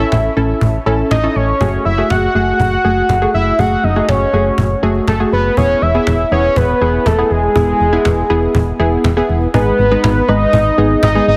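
A fat, detuned sawtooth lead drives this cool, driving synth-pop passage at 121 BPM in F# dorian, carrying the melody between G#4 and F#5 with vibrato and a tape echo trailing behind it. Beneath it, a funky polysynth comp plays chords shaped by ring modulation, wave-folding, a filter sweep and a mellow chorus sheen. A round, dark FM bass sits up front in the low register from E1 to A1, its punchy, fast-attack notes decaying. A woody cajon enters at 0.1 s with soft hands, faint snares and a saturated, compressed edge, sitting lower in the mix than the synths. The harmony moves from A to F#madd9 and then E, and shifts to G#m at 9.5 s as a new section begins. The sound is heavily compressed like radio, with moderate digital scoring-stage reverb around it, and the clip is cut from a longer piece.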